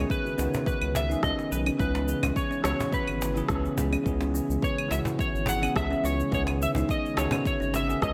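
Mystical and hypnotic, this short excerpt of organic downtempo in C# minor at 106 BPM with a light sixteenth-note swing sets an up-front, slightly broken-up electric slide guitar melody with chorus and delay over bell-like tine electric piano, a mellow hollow-box kalimba weaving delayed arpeggios, an ethereal detuned pad on slow-attack sustained chords, and a round, wave-folded analog bass with tube saturation, while a deep layered electronic kick, gated-reverb cabasa, claves and rim click, and a woody compressed cajon drive the B69 to C#m7 changes within a bright 1980s-style digital production bathed in plate reverb.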